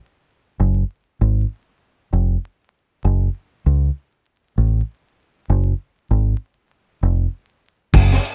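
Gritty and reflective, this boom-bap hip-hop excerpt, cut from a longer piece, moves in 4/4 with a swung sixteenth-note feel. A deep dub fingered electric bass carries the passage almost by itself from 0.6 seconds, sitting low and up front with a dark, round, foam-muted tone that still lands punchy through its direct, amped sound. Only at 7.9 seconds does a crunchy breakbeat drum kit cut in, bringing crash cymbal, hi-hat, a tight kick and a high-tuned snare, all saturated and thick with vintage 12-bit sampler grit beneath a rolled-off top. The drums sit mid-forward and close in a studio room, and the bass stops at 8.2 seconds. The mix is dry on reverb yet echo-heavy, with vinyl crackle adding a dusty, worn patina.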